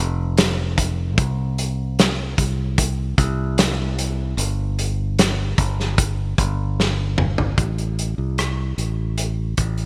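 Bright 1980s-style digital production with light reverb frames this heartfelt, hopeful pop ballad fragment in a straight four-beat feel. A growly, up-front fingered electric bass opens alone, with a loose, muffled indie drum kit joining at 0.4 seconds, its fat snare, tight kick, rim clicks, hi-hat and toms sitting close and lo-fi under gated reverb. A drum fill from 6.8 seconds carries the piece into a new section at 7.6 seconds.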